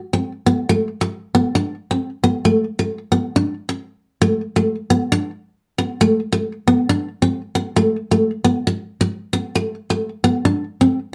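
Sunny and warm, this short highlife passage is cut from a longer piece and moves at 135 BPM in a straight 4/4. A lone picked steel-string acoustic guitar carries everything from 0.1 to 11.0 seconds, staying within a narrow range from A3 to D4. The dreadnought's full body sits up front, and a finger squeak adds a touch of human texture to the warm, picked tone. A wet studio reverb with a short 0.5-second tail gives the room a soft bloom around the instrument. The music shifts into a new section at 8.7 seconds before the clip ends.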